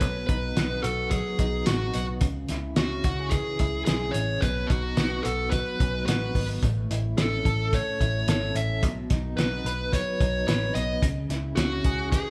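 This restless, wistful stretch of jangly indie pop at 109 BPM opens with the full band at once: a dark, overdriven lead guitar carries the up-front melody over bright, compressed arpeggios from a clean, direct-recorded electric guitar treated with tremolo. Beneath them, a foam-muted vintage electric bass gives round low notes, and a cloth-damped acoustic drum kit thuds out muffled, gritty hi-hat, tight kick and fat snare with a rolled-off top. The chords move through B, C#m, B and A, and the band, playing live together in one large studio room, is bathed in moderate reverb in this passage cut from a longer piece.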